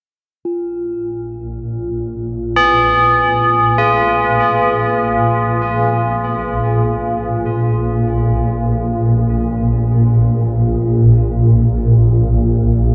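In free time and tuned to A4 = 436 Hz, this unsettling, cavernous dark ambient drone fragment of a longer piece opens at 0.5 seconds on a Bb5 chord, as a pure, meditative quartz singing bowl struck with a wooden striker fades in softly in the background with slow beating; a swarming, tense, up-front drone of detuned sine and sawtooth tones with ring modulation and granular processing fades in at 1.1 seconds and sustains and evolves in unison across its low register; and at 2.6 seconds solemn, metallic tubular bells played with a plastic hammer enter up front with bright ringing arpeggios through tape echo, all steeped in a huge 7.5-second reverb and a dark, warm production.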